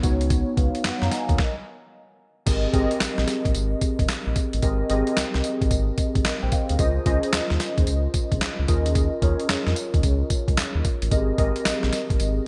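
A gritty, pitched-down, sampler-style drum kit sits up front in this bouncy, flirty R&B and new jack swing excerpt: a thumpy kick, snare, hi-hat, handclaps, tambourine and crash, swung and bathed in gated reverb. A mellow tine electric piano with analog chorus plays lush chords such as Abmaj9 and Dbmaj9 over a round, deep analog bass, and the band halts for a stop from 1.4 to 2.5 seconds before the groove resumes. The bright 1980s-style digital production adds light reverb and a digital ambience.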